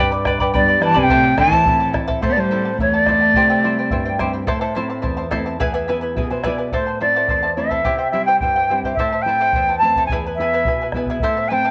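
Andean folk with a wistful, melancholic air, this brief fragment sets a reedy large quena with vibrato up front over shimmering fingerpicked charango, dark full-bodied nylon-string guitar and a round, compressed bombo, while a rich bowed cello played sul tasto adds a second line until 4.2 s, when the quena also falls silent until a guitar fill at 5.9 s leads into its return at 6.7 s, heard in a small room with light reverb.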